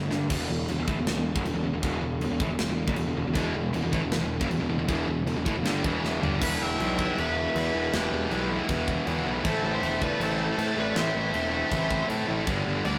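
A growly, fuzz-drenched electric bass sits up front beside a bright high-gain guitar riff, which drops out briefly and returns at 3.3 seconds, while a very quiet second heavy guitar and a double-tracked, biting overdriven guitar fill in behind them in this relentless, epic heavy metal excerpt in E minor at 158 BPM. A tight acoustic kit with bright china and crash cymbals, a medium-tuned snare and toms drives the straight 4/4 pulse, and a drum fill at 6.0 seconds leads into a half-time passage where a dark distorted lead guitar melody enters at 6.4 seconds, joined by a second lead line in the background as the chords move from Em to Am and G. The sound is a rough rehearsal-room recording with tube saturation and a moderate stone-room reverb.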